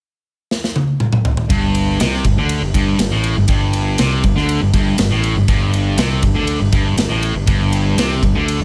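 An acoustic rock drum kit opens at 0.5 seconds with a fill, its punchy kick and bright cymbals placed up front in a small room. At 1.5 seconds a sludgy, double-tracked overdriven guitar riff on a G5 power chord enters alongside a growly, fuzz-laden fingered bass, driving this aggressive hard rock passage at 120 BPM in straight 4/4. The picked guitar sits forward and bright, while the bass adds a gritty low rumble beneath it.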